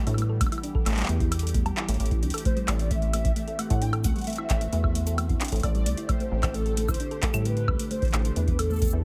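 IDM at 132 BPM in A dorian, melancholic and cerebral, this excerpt opens with a swirling, nasal analog pad sustaining chords under phaser and chorus in the background, while a round, tine-like thumb-piano-like synth pluck spins arpeggios through chorus and tape echo. A rubbery, resonant acid bass sits up front with a dark square-wave bite, an electronic kick drum thuds deep, and a booming analog drum machine adds cabasa, handclaps, metallic hi-hats and woodblock. At 2.5 seconds a warbling, nostalgic lead enters with vibrato and ensemble chorus, all in a dry sound over chords moving from Em/A to Am7 and D7sus4/A.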